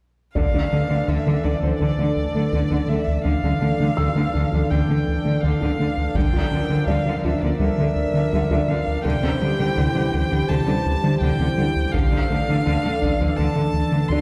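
This relentless, vast cinematic cue, blending orchestral and electronic scoring, opens at 0.4 seconds with a full texture at a steady 83 BPM in D minor. A round analog bass riff and a sustained cello section on a single low D anchor the bottom, while a woody, wave-folded pluck with chorus and tape echo spins arpeggios in the background. A hollow, airy pad enters a moment later with flute-like sustained chords. A solo violin carries the melody with vibrato and portamento, its expressive bowed line tinged by tape echo, and the lush cello section adds a focused, smooth ensemble weight. Solo taiko drums struck with hard sticks punctuate the piece in short bursts, including one at 6.2 seconds, and a dark, felt-muted upright piano with audible action noise adds quiet texture until 9.1 seconds, returning only briefly at the close. The harmony moves from Dmadd9 through Gm7/D and C/D before returning to Dmadd9, and the whole is heard from further back in a wet scoring-stage reverb with a faint mains hum beneath.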